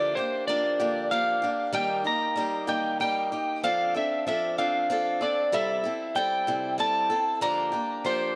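A straight 6/8 pulse at 63 BPM, counted in dotted quarters, carries this brief rock passage with an open-road, jangly mood. An electric slide guitar, fingered and slightly broken-up with digital delay, sings the melody between C5 and Bb5. A boxy, picked swing-style acoustic guitar accompanies from C3 to A4, both parts up front under light reverb across all 8.4 seconds as the harmony moves from Bb6/D through Eb, F6 and C6 back to Bb6/D.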